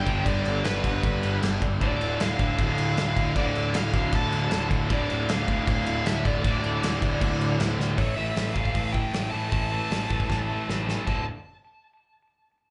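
Three riffing guitars and a melodic lead open this urgent, aggressive punk rock excerpt in straight 4/4, moving from G to D minor. Up front, a loose indie drum kit drives with a punchy kick, medium-tuned snare, hi-hat, dark crash and a pumping room sound. Beneath it, a growly fuzz bass rumbles with bright, overdriven grit. The riffs come from a compressed distorted guitar and a double-tracked semi-hollow one, both set back with slapback echo, plus a very quiet, tight distorted part. Over them a smooth lead carries the melody with overdrive and tape echo. A drum fill at 7.8 seconds leads into a new section at 8.0 seconds, where the semi-hollow guitar drops out and the chords shift to power chords, and another fill brings a D5 at 11.1 seconds. Heard as a live gig through a club PA, the sound has a top end that stops around 10.6 kHz and a touch of venue reverb.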